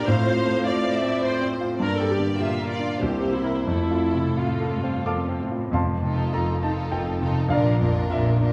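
Lyrical and passionate, this romantic movement for piano and orchestra moves in a flexible, rubato three-beat lilt, with a clear, vintage-toned grand piano carrying the melody up front over a distant violin section on a second line, smooth viola accompaniment and a lush cello bass, all bowed with vibrato. A dark, tight French horn section holds sustained chords until 5.4 seconds, and at 5.7 seconds a distant double bass section and a round, softly malleted timpani enter as the harmony shifts toward the new section. From 6.0 seconds a second, expressive violin section with a soft attack adds its own melody in the background, all set in the reverberant bloom of a recital hall.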